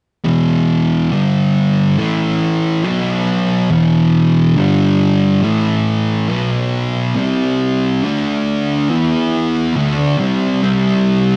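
A thick, double-tracked fuzz electric guitar sits up front and plays a picked, distorted riff from 0.2 to 11.4 seconds in this brooding, ominous metal fragment at a slow 69 BPM in E minor, tuned to A4 = 435 Hz, moving through E5, G5, A5 and B5 power chords before shifting to C5 and D5, all in a dry, dark production with its highs rolled off.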